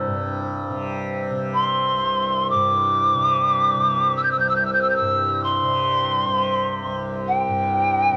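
Peaceful and calm, this short cut from a longer piece of meditative world music floats in free time. A softly plucked tanpura holds an acoustic, buzzing drone up front throughout, given depth by plate reverb. High crotales struck with plastic mallets ring in the background for only the first 0.6 seconds, bell-like and mellow with a boxy small-room tone and their own plate reverb. At 1.5 seconds a polished pan flute takes the melody, its airy, woody voice carrying gentle vibrato, a soft attack and an expressive, warm character, placed up front yet sounding distant and touched by analog delay. Captured as a home recording on cassette in a wet small room, every part carries the tape's coloring.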